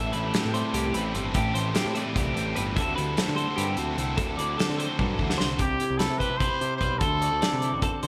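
This math rock and midwest emo excerpt opens at once on an intricate, bright weave of guitars in 7/8: a scooped, clean electric guitar with lush chorus sits in the background, while a compressed, twangy twelve-string electric guitar picks high arpeggios through an analog delay. Beneath them, a double-tracked overdriven guitar plays the riff, joined by a growling picked bass with overdrive and a loose indie drum kit with a punchy kick, a medium-tuned snare and a rolled-off top, mixed up front. The harmony moves from Am11 to D9sus4, and a drum fill from 5.0 s leads into a new section at 5.6 s, where the overdriven guitar stops and the chords turn to Cmaj7 and D7. Here a raspy, gritty trumpet with vibrato and slapback echo takes the melody until 7.8 s. A lush hall reverb gives the mix a big arena sound.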